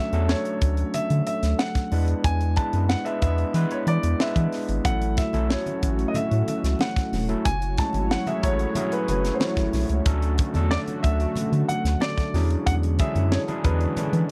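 A deep, round analog bass sits up front in this polished 1980s jazz-funk pop excerpt, set at 92 BPM in a straight 4/4 with an urban, glossy mood. A tight funk drum kit with a high-tuned snare, tight kick and hi-hat holds the groove, while a barky, overdriven tine electric piano played through a combo amp adds gritty accompaniment with a subtle chorus. Above them, a warm, natural baby grand piano carries the melody, colored by tape echo. Bright but distant congas join very quietly at 4.8 seconds, and a smooth, warbling sawtooth pad with chorus enters in the background at 5.4 seconds. The chords move through Dmaj7, E7, A6 and F#m9 before returning to Dmaj7 and E13, all captured in a dry, close 1970s-style studio sound.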